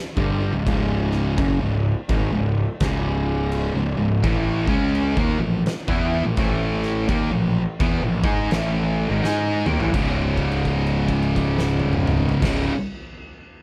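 Stoner and doom metal with a sludgy, brooding swing, this excerpt sets two picked fuzz guitars in the background, one warm and one thick and dark, behind an up-front overdriven, picked electric bass and an oversized low-tuned acoustic kit with a boomy kick, fat snare, shadowy cymbals and a gritty, saturated, pumping big-room sound. A bright, double-tracked tight distorted guitar joins at 4.2 seconds as the riff moves from C#5 through A#5 and A5, and a drum fill at 9.2 seconds leads into a held note back on C#5 that carries to the close. The mix is dry, with little reverb.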